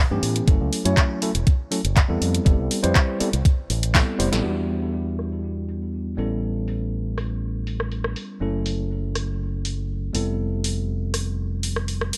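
An overdriven, thumpy electronic kick drives this cosmic, groovy nu-disco cut at 121 BPM, then drops out at 4.1 seconds during a drum fill, while a punchy house kit of handclaps, rim clicks, filtered snare and bright hats sweeps under a filter for the rest. A bright fingered bass with an envelope filter runs beneath a mellow, worn and slightly out-of-tune tine electric piano that pumps to the sidechain and trails delay, with its own filter sweep in the opening bars. The chords move from F#m7 and Fmaj9#11 through Em7 and A9 before returning, all set in a digital ambience.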